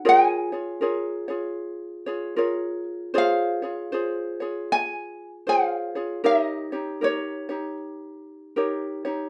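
Two fingerpicked acoustic ukuleles open together, both up front in a rough home-demo mix with wet studio reverb: a bright, light ukulele carries the melody while a warm, light ukulele plays accompaniment beneath it. This languid, sunny Hawaiian fragment moves at 78 BPM with a swung eighth-note feel, starting on Bbm7 in Bb minor and shifting into Db major at 3.2 seconds through Dbmaj7 and then Eb7. The melody stops at 7.8 seconds, and the accompaniment plays alone until 9.3 seconds.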